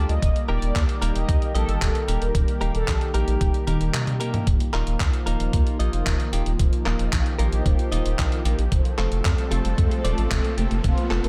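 A deep, round analog bass sits up front in this melodramatic, nostalgic italo disco excerpt, joined by a thumpy, gritty electronic kick and a dusty, tape-warm soul drum kit of handclaps, hi-hat and toms with gated reverb, while a lush detuned unison pad holds sustained chords, a clean direct-recorded electric guitar plays filtered stabs, and a dark, brassy synth lead with chorus, vibrato and delay carries the melody; a drum fill at 3.7 seconds leads into a filter sweep on an analog polysynth from 4.5 seconds, and a very quiet electronic riser enters at 7.9 seconds.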